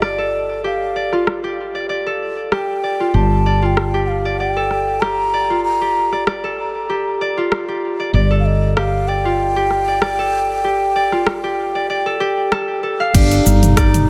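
A lightly reverberant, up-front mix opens this mystical, earthy organic downtempo excerpt at 96 BPM with a gentle 16th-note swing, where a breathy, hollow bass bansuri carries the delayed melody over bright, ringing fingerpicked concert harp arpeggios softened by a low-pass filter, a dark, round, punchy woody fretless bass pumping on a low G1 beneath an F69/G chord, a filtered deep house kit of dark hats, cabasa, rim click, toms and crash, a pure, meditative quartz singing bowl ringing on D5 in the background, and a deep electronic kick arriving only at 13.1 seconds.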